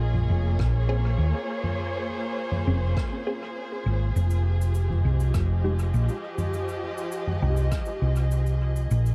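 Meditative and hazy, this short ambient dub cut from a longer piece moves at 101 BPM in F minor, where a round, hollow-body electric bass sits up front beneath distant, bowed chamber strings holding dark, vibrato-laden chords over Bbm9 and then Fm9. A roomy soft-mallet kit of cabasa, rim click and toms trails dub echo, while a deep electronic kick enters at 0.6 s in the background. From 0.9 s a muted, detuned sawtooth chord stab with a fast attack and short decay flickers through phaser and echo, and the whole mix stays echo-heavy under light studio reverb.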